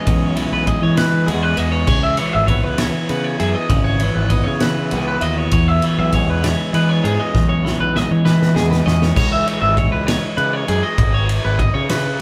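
A steady 6/8 pulse at 66 dotted-quarter beats per minute drives this excerpt of bright, intricate math rock and midwest emo, played by a band live in one room with light reverb. A clean, compressed twelve-string electric guitar lays down the chordal accompaniment, moving between E6 and C#m7 with a touch of spring reverb. Over it, an up-front electric guitar through a small old amp picks twangy, slightly broken-up arpeggios in its upper register, also bathed in spring reverb. A growling fingered bass adds overdriven grit underneath, while a loose indie drum kit with a fat snare, punchy kick, dark crash and ride cymbals breathes in a pumping room sound. A drum fill from 7.3 seconds carries the band into a new section at 9.2 seconds, which settles back onto C#m7 before the cut.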